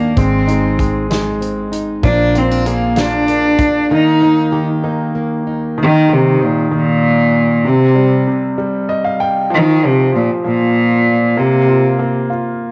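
A warm, bowed cello carries the melody with a soft, floating sul tasto tone, colored by cassette tape and an analog delay, in this swaying, heartfelt six-eight pop ballad at 64 BPM, cut from a longer piece. A clear, intimate grand piano with audible action noise accompanies throughout and adds a fill at 8.6 seconds. A dark, full-bodied fingerpicked acoustic guitar plays arpeggios until 6.3 seconds, while a round, foam-muted electric bass with tube saturation and a natural country drum kit with a punchy kick support only the opening, the drums stopping at 3.7 seconds, all within a homey, wet room ambience.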